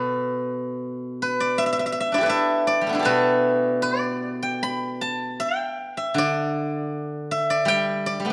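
A solo steel-string zither, played with fingerpicks and sitting up front, rings out in a silvery, warm voice across a flowing, serene passage of Chinese traditional music in G gong mode, moving with a rubato feel around 79 BPM in 2/4 and spanning B2 to B5, all set in a moderate scoring-stage reverb through this brief 8.3-second excerpt from a longer piece.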